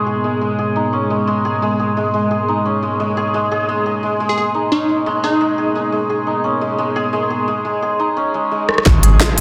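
A dense, heavily limited mix with a moderate digital room sheen sets a spacious, tense mood for this half-time drum and bass fragment, cut from a longer piece. A mellow, shimmering santur rings up front with dub-echoed arpeggios over a moody, detuned analog pad whose sustained chords pump and sweep through a filter, while a crystalline wavetable pluck with 12-bit grit adds a brief melody at 4.3 s. An industrial kit with a clanging snare and crisp hats bursts in with a fill at 8.7 s, and at 8.9 s a heavy electronic kick, a thick saturated sub bass and a very quiet impact land together.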